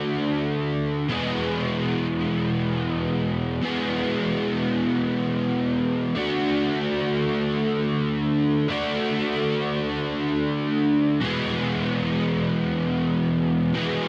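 With light reverb and a home-cassette haze, this dreamy, wistful rock fragment in free time and E mixolydian features a lone dark, overdriven electric guitar, picked, double-tracked, compressed and up front, treated with analog chorus, analog delay and tape color, ranging from E2 to G#4 as it drifts between D and E chords, moving to E at 1.1 seconds and back to D at 6.2 seconds.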